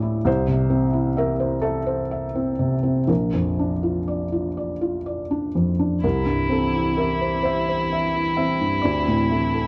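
A dark, lightly reverberant production frames this reflective, longing neoclassical fragment in 6/8, with uneven, rubato timing, cut from a longer piece. A soft, felt-muted upright piano with a vintage, intimate tone carries the accompaniment from the start, moving through Am/C, Bb, C and Dsus2. At 6.0 seconds a single bowed violin enters on E4, rich with vibrato yet sounding distant, and from 6.4 seconds a warbling, lo-fi tape-like pad adds sustained, nostalgic chords coloured by chorus and its own reverb.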